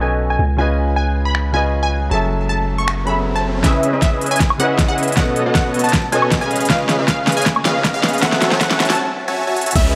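A lush hall reverb surrounds this bittersweet future bass passage, cut from a longer piece and moving with a half-time feel. A bright, punchy unison pluck carries the melody through phaser, delay and a worn cassette-tape tint, while a clear concert grand piano with open low end plays chords behind it through a digital delay. Both pump against the sidechain, as does a deep, mellow 808-style bass that sits up front in the opening stretch, drops out at 3.6 seconds and returns briefly at the close. A pop drum kit with a fat snare, crisp hats, finger snaps, woodblock and crash enters at 1.3 seconds, and a very quiet riser and downlifter come in at 2.1 seconds. At 3.6 seconds, a huge, thick supersaw riff and a layered, knocking electronic kick enter, and a filter sweep on the supersaw drives a build-up with drum fills. A short break begins at 9.0 seconds, and the chords move through C#m7, B7, C#7 and F#m7.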